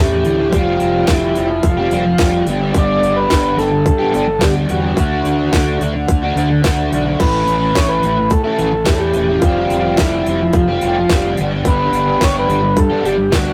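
Reedy combo organ carries the melody with light vibrato, sitting clean and vintage over this hypnotic, trippy psychedelic rock excerpt in a straight 4/4 at 108 BPM. Up front beside it, a crunchy, double-tracked overdriven guitar plays a picked riff through a rotary speaker, its tone warm. A round, fuzz-soaked fingered electric bass holds down the low end, slightly further back in the mix. The garage drum kit enters at 0.2 s with a tight kick, cracking snare, crisp hi-hats and crash cymbal, its sound layered and produced. The chords cycle through A, Fsus2, G and D, and a moderate reverb gives the rough rehearsal-room recording a sense of space.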